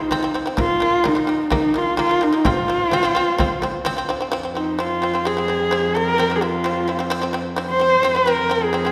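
Drenched in the long, wet reverb of a concert hall, this short excerpt of Mongolian folk music has a vast, solemn mood at 129 BPM in a straight 4/4, set in the F yu mode. A husky horsehead fiddle carries the melody up front, its bowed horsehair strings sounding smooth on top with a soft attack, vibrato and expressive portamento. Beside it, a bright, buzzing shamisen plays plectrum-plucked arpeggios with a percussive, fretless bite, while a deep frame drum, struck with hard hands and heard close, sounds through the first half until 4.1 seconds. At 4.3 seconds a dark, reedy cello enters with a low F drone in a period-style gut-string tone, grounding the second section beneath the fiddle and shamisen. The harmony moves from F5 to Eb5 and back to F5, giving the fragment a stark, open-fifth gravity.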